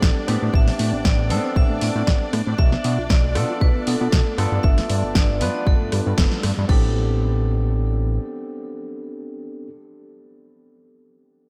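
Nu-disco at 117 BPM in A minor with a groovy, sleek feel, where a metallic, ringing vibraphone with delay carries the melody over a barky electric piano with delay and sidechain pumping, rich bowed strings in the background, a soft, round pluck playing arpeggios, a fat, detuned analog bass up front, and a punchy electronic kick with a house kit of bright hats, snare, rim click and crash, the drums, strings and pluck stopping around 6.8 seconds after a band accent at 6.2 seconds while the bass carries on to 8.2 seconds.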